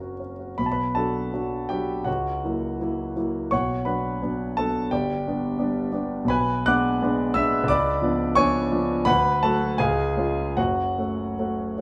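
A warm grand piano carries this romantic character piece alone, its natural, intimate tone marked by audible action noise and long sustain. Set in B minor and in 2/4, the music moves with a rubato feel, the tempo drifting between 72 and 91 BPM, and the mood is bittersweet and stormy. The harmony passes from Bm through F#7/C# and G to a C#7b9 around 7.7 seconds, then moves through D and C# before settling on F#m at 10.6 seconds. The piano is up front in the mix and spans the keyboard from F#1 up to F#6. A large studio reverb adds a wet glow, placing the listener further back in the room. This short passage is cut from a longer piece and ends at 11.8 seconds.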